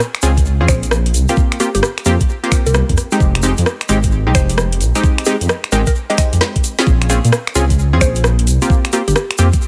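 UK garage in a two-step style, this short cut from a longer piece has a skippy, late-night mood, its swung sixteenths giving the groove a loping bounce. A layered garage kit of finger snaps, metallic hats, rim clicks and a woody snare opens the cut, while a grainy egg shaker rustles close in the background from the first moment. A deep, rumbling detuned saw bass, dark and beating, enters at 0.2 seconds alongside punchy chord stabs whose decaying, filter-plucked tone is thickened by chorus and digital delay, and an overdriven electronic kick joins up front at 0.4 seconds with a knocking punch. A round, mellow, mallet-like FM pluck carries the melody from 0.7 seconds, colored by chorus, phaser and delay. The chords move through Bbm9, C7sus4 and Fm9, and a brief drum fill at 6.4 seconds leads back into Bbm9, all in a dry mix with little reverb.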